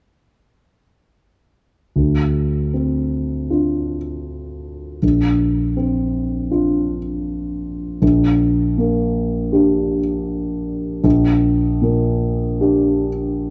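Classical solo piano in D minor, a longing and fragile excerpt at 79 BPM in 4/4 with a rubato feel, where a concert grand plays an accompaniment from 2.0 to 13.5 s, ranging from Bb1 to G4 over Dm7, Bbadd9 and Gm/Bb. The piano sounds dark, mellow and intimate, sitting up front with a deep bass, a boxy tone and audible action noise. Light reverb surrounds it in a dark, warm production.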